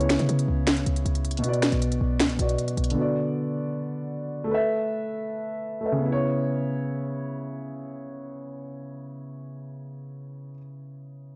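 A dark, boxy concert grand piano sits up front with a low-pass filter, playing mellow accompaniment in C# phrygian through chords like C#m7, Bm, D6 and Asus2 in this melancholic, hard-hitting trap excerpt at 157 BPM in a half-time feel. For the first 3.0 seconds, an electronic trap kit with a sharp snare, crisp hi-hats and finger snaps joins a punchy, tight sine 808-style bass with a noise layer, a fast attack and a decaying tail, after which the piano carries on alone until 11.4 seconds. The sound is dry and gritty with a cassette-tape character and light reverb.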